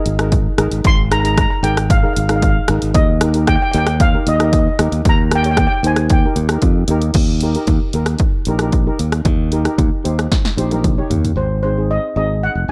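A straight 114 BPM calypso groove in 4/4 from a punchy, dry analog drum machine carries this carefree, sunny excerpt, where an airy, shimmering steel pan melody sits up front over a mellow, smooth double-seconds steel pan accompaniment and a growly, bright fingered electric bass, all in a dark ambience, until the kick and snare drop out at 6.9 seconds, a drum fill runs from 10.3 to 11.4 seconds, and the lead pan returns for the closing Ab chord.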